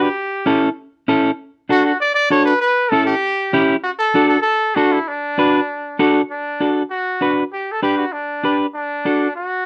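Joyful and sunny, this brief Latin excerpt moves at a brisk 196 BPM in D major, with a solo trumpet carrying the melody in a punchy pop style, its light vibrato and scooped notes giving it a roomy, faraway glow. A clean, dark electric guitar plays fingered accompaniment up front, and the trumpet holds its line until 9.7 seconds, just after the guitar stops. The harmony rocks between A7 and D before moving to G and back to D in a second section from 6.3 seconds, all captured by close, detailed microphones with light reverb.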